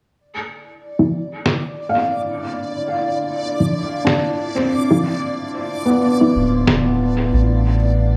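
This hazy, deep ambient dub fragment, cut from a longer piece, sits at 92 BPM in 4/4 with a swung sixteenth feel in D dorian over a Dm9 chord. A reversed, dreamy texture swells in first at 0.9 seconds, bright and granular, while a calm organ-like pad fades in alongside it, pure and dark, with ensemble chorus and a moving notch. A muted, detuned sawtooth chord stab plucks through a filter sweep with analog chorus and dub echo. A compressed, pitched-down electronic snare enters at 1.5 seconds, muffled and tape-toned, sitting up front with echo trailing behind. A felt-muted upright piano plays soft, boxy arpeggios close to the ear with audible action noise, filtered and echoed. At 6.3 seconds a round, soft sub bass arrives up front, all set in a moderate hall reverb with small-room ambience.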